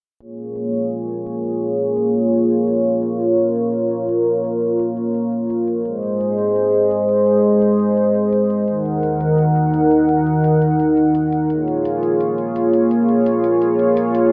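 A lush hall reverb and a low-pass filter with a filter sweep running throughout shape this moody, nostalgic synthwave excerpt in a steady, straight 4/4. Up front, a dark analog pad blends sawtooth and triangle tones over a sub octave, its slow attack, long release and chorus drawing out smooth sustained chords that move from Bbm7 to Ab, Ebm and back to Bbm7. A layered electronic hi-hat sits in the background with a small room reverb, and both parts play from 0.2 to 14.3 seconds.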